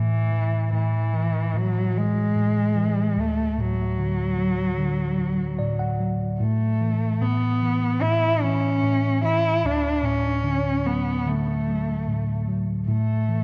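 Washed in a lush hall reverb and worn, warbling cassette tape with a drifting pitch, this short pop excerpt feels hopeful and emotional, moving unhurriedly over a simple harmony of A5, D and Aadd9. A dark, boxy bowed cello carries the melody up front, smooth and even with vibrato, while a slightly out-of-tune tine electric piano played through a combo amp gives clean accompaniment throughout. The piano adds a brief fill from 5.2 to 6.4 seconds.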